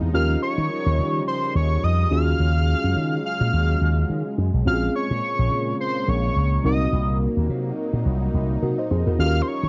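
Funk at 106 BPM in 4/4 with a 16th-note swing, this short excerpt cut from a longer piece carries a late-night, funky mood. A bright, amped slap bass run through an envelope filter sits up front from the very start and is the loudest part. A lush, detuned sawtooth unison pad holds sustained chords with a slow attack and long release, softened by chorus. A mellow FM electric piano with a round, full-bodied tone and a touch of noise adds decaying accompaniment under chorus. Entering at 0.1 seconds, a fat analog lead with a sub octave and vibrato sings a high melody, treated with chorus, phaser and slapback echo. The harmony moves from Eb9 through Ebm11 and Bbm9 to Cm7b5, captured in a dry, close 1970s-style studio sound with little reverb.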